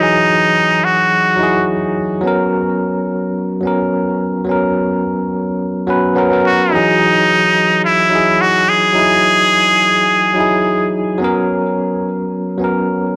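Heard through cassette-tape coloring, analog delay and a moderate spring reverb in a small room, this relaxed chillout excerpt at 107 BPM with a light sixteenth-note swing sets a bell-like, clean tine electric piano under chords moving from Emaj9 to F#add11 and a rootless G#m11, while an up-front, nasal straight-muted trumpet with jazz vibrato and a smooth top plays brief solo melody phrases from 0.0 to 1.7 seconds and again from 6.5 to 10.9 seconds.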